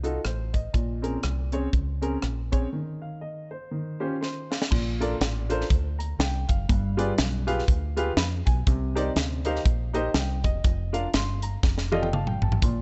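A swung 4/4 groove at 122 BPM drives this uplifting, hopeful uptempo gospel excerpt, where a crisp fusion drum kit with a high-tuned snare and punchy kick, a dark, round, foam-muted fingered electric bass and a natural, short-sustained baby grand piano play from the start, through a break at 2.7 seconds, into a Bb major passage from 4.7 seconds, with piano and drum fills closing each section under light reverb.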